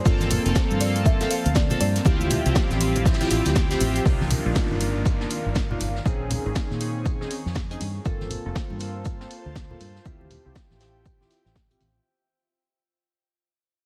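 A deep, late-night deep house excerpt opens on a mellow soft-mallet marimba melody with delay, a very quiet warbling analog pad and an airy, breathy pad, joined almost at once by an overdriven electronic kick up front, a dry analog drum machine, a background soul kit with rolled-off top, low-tuned congas, a foam-muted fingered electric bass and glossy chorused polysynth stabs with tape and digital delay, the breathy pad, stabs and bass pumping with the sidechain, before the marimba stops at 3.5 seconds and, from 4.1 seconds, a filter sweep on the polysynth and a background downlifter carry the heavily compressed, radio-like mix into its fade-out.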